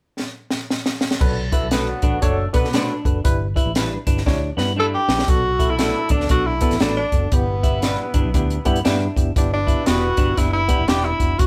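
A lightly reverberant live-room sound frames this passionate, driving slice of uptempo 1960s-style soul in B minor at 118 BPM with a swung feel: a dry, up-front cocktail drum kit with dark cymbals, a high-tuned snare and a punchy kick opens with a fill; a foam-muted, round electric bass and a barky, lightly overdriven reed electric piano with fast tremolo enter at 1.2 s; two clean semi-hollow electric guitars add a picked riff and fingered stabs beside a mellow, vibrato-laden horn section in the background; and a breathy, subtone tenor saxophone with scooped notes takes the melody up front from 4.8 s, while the harmony moves through Bm7, G6 and Em7 and an electric piano fill arrives at 8.3 s.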